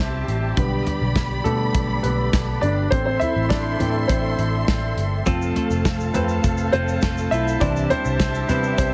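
This piano-driven pop excerpt moves at 102 BPM in a straight 4/4 in C major, with a warm, anthemic mood. A concert grand piano sits up front and carries the spotlight throughout, its intimate tone full of deep bass and audible action noise, while a lush bowed string section holds sustained chords above it with expressive vibrato and a smooth top. A dark, round, foam-muted electric bass with a vintage, amped character anchors the low end, and an acoustic drum kit in a small room joins at 0.3 seconds with a punchy kick, a medium-tuned snare, hi-hat and toms. At 5.3 seconds a bright, clean, twangy twelve-string electric guitar adds a picked riff, joined by a grainy egg shaker tucked in the background. The harmony moves from C through G/B and Am to F before settling back on C, all framed by light reverb and studio ambience in a heavily compressed, radio-ready mix.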